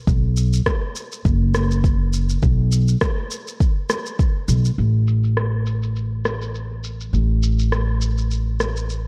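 A woody, thumpy upright bass sits up front in this short organic downtempo excerpt, plucked pizzicato on steel strings in a low register and pumping under sidechain compression from start to finish. It moves at 102 BPM in 4/4 with a light swing on the sixteenths, giving the groove an earthy lilt. A deep, layered electronic kick drum, also up front and re-recorded in a small room, drives the opening before dropping out at 4.3 seconds. A quieter layered electronic shaker and rim click runs throughout, its snare, percussion and room sound softened by low-pass filtering. From 4.8 seconds a filter sweep moves across the drums as the piece enters its second section. The production is dark and warm, with little reverb, keeping the sound close and intimate.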